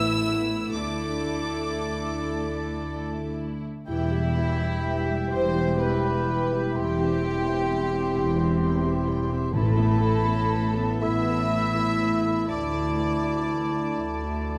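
Opening on intimate, softly bowed strings (a violin melody over a floating second violin line, dark violas, cellos and woody double basses), joined from the start by a distant oboe and mellow French horn chords, this tender, uplifting cinematic film score in a rubato 6/8 brings in an airy flute and a roomy clarinet at 3.9 seconds and a brief, very quiet touch of hard-mallet timpani at 9.5 seconds, set in a moderate scoring-stage reverb.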